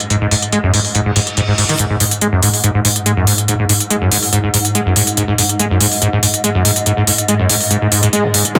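A squelchy, resonant sawtooth acid bass riff sits up front in this industrial, intense peak-time techno excerpt, its filter sweeping through lush chorus, dub echo and sidechain pumping, alongside a swarming, detuned, wave-folded drone that also pumps. A tape-warm drum kit with a cracking snare and smooth, filtered hats drives the straight 4/4 groove. A brief reverse cymbal at 1.1 seconds leads into a build-up from 1.8 seconds, and a heavy electronic kick lands only at 8.6 seconds, the whole mix sitting in a moderate plate reverb.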